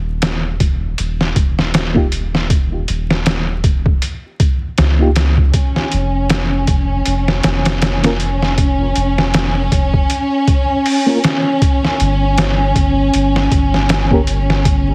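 A gritty, pitched-down sampler-style drum kit with a thumpy kick sits up front in this dark, melancholic trip hop excerpt at 79 BPM with a swung feel, over a deep, round dub sub bass from the start, joined at 1.9 seconds by a reedy electric piano with fast tremolo and tape echo and at 5.5 seconds by a lush bowed string section holding a sustained chord, in a heavily compressed, radio-like mix with vinyl crackle and little reverb.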